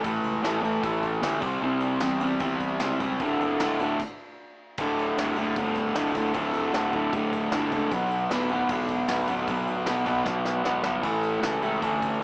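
Swaggering and raw, this garage rock cut from a longer piece drives along at 153 BPM in a straight 4/4 in D major, led by a dark, overdriven, lo-fi, double-tracked electric guitar riff up front that moves through A, C and D5 before settling on D, Bm and A. Beneath it sits a bright, growling fingered electric bass with its own overdrive, set in the background, while a distant, roomy brush drum kit with a tight kick, medium-tuned snare, ride and crash keeps time. The band halts in a stop from 4.0 to 4.8 seconds, and a drum fill at 10.3 seconds leads into the closing chord, all heard through light studio reverb with a small-speaker character.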